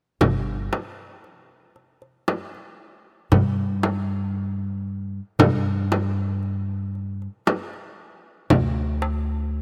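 Upright bass, darbuka and frame drum enter together at 0.2 s in this melancholic, longing fragment of a Turkish makam ensemble piece, moving in 10/8 at 116 BPM counted in eighths with a straight feel. The frame drum sits up front with a close, hard-handed sound, while the metal-shelled darbuka adds a crisp, small, high voice, close and dry, and the woody pizzicato bass on steel strings, also up front, roams between G1 and G2. Light reverb and studio ambience surround this rough home demo mix, which runs to 9.6 s.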